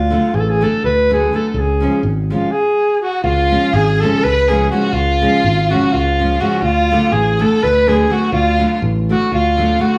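An alto saxophone and a fingered electric bass open this fiery, virtuosic Balkan wedding-band excerpt together, with a nylon-string guitar joining a moment later. The music runs at 248 BPM counted in eighths, in a straight 7/8, set in C# Phrygian dominant over chords that move from D to C# and back to D. Up front, the saxophone carries the melody in a classical style, with vibrato, a soft attack and a smooth top, while the growly, bright electric bass sits close and direct beside it. The fingerpicked acoustic guitar adds warm, classical accompaniment underneath. At 3.0 seconds a single bowed violin enters with a clear, even second line full of vibrato, heard from a distance. The band sounds as if it is playing live in one room, bathed in a wet, large studio reverb.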